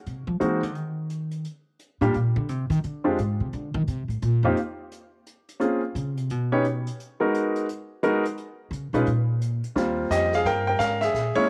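A brisk 173 BPM swing in 4/4 with a lilting eighth-note feel drives this short cut from a longer jazz piano trio piece in Eb major, relaxed and playful in mood. The upright bass takes a solo through the first 9.8 seconds, plucked with a woody, growly steel-string tone that sits up front and ranges from Eb2 to F3. The drum kit is played with brushes and sounds distant and roomy, with a high-tuned snare, hi-hat and a boomy kick sitting low in the mix. The baby grand piano enters at 0.4 seconds with a clear, natural melody of short sustain between G3 and G5, also placed close to the listener. Light studio reverb surrounds the trio as the harmony moves through chords such as Fm13, Bbm9 and Abm9 before settling on Eb69 at 9.8 seconds.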